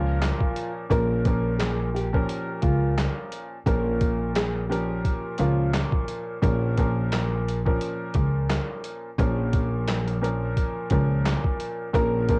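Boom-bap hip-hop with a tough, dark mood at 87 BPM in Bb dorian, this short cut from a longer piece sets a woody, pizzicato upright bass and a gritty, pitched-down sampler-style kit of thumpy kick, medium-tuned snare, hi-hat and handclaps up front, with a polished upright piano under cassette grit accompanying on a Bbm chord throughout while a thumb-plucked nylon-string guitar with tape echo carries the melody until 5.7 seconds and returns briefly at 11.9 seconds, all in a dry home cassette recording.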